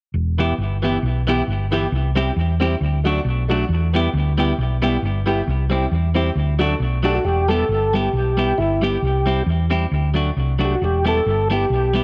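A mellow, lightly overdriven tonewheel organ takes the melody at 7.0 seconds, its dark, round tone colored by chorus vibrato and a slow rotary speaker, lifting this mischievous, energetic ska passage in E minor at 135 BPM with a light swing. Underneath, a hollow-body short-scale electric bass sits up front from 0.1 seconds with an amped, fingered sound, while a bright, twangy clean electric guitar, picked and compressed with tape echo, carries the accompaniment over an Em, C and D progression. A woody, slightly detuned, boxy upright piano adds stabs until 7.2 seconds, and light digital ambience gives the mix a touch of space.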